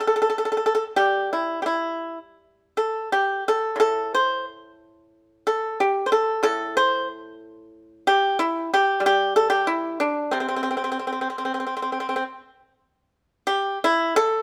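The rhythm floats freely in a rubato 4/4, hovering between 82 and 94 BPM. This short Chinese traditional excerpt, in C gong mode with A4 tuned to 439 Hz, has an elegant, pastoral mood. A single pipa carries the whole 14.4 seconds alone, ranging from A2 up to C5. Played with fingerpicks, its acoustic tone sounds percussive and dry, sitting up front in the mix. The performance was captured live in one room, where a moderate stone room reverb with an RT60 of 1.1 s gives the plucked notes a gentle halo, and a brief new passage begins at 13.1 seconds.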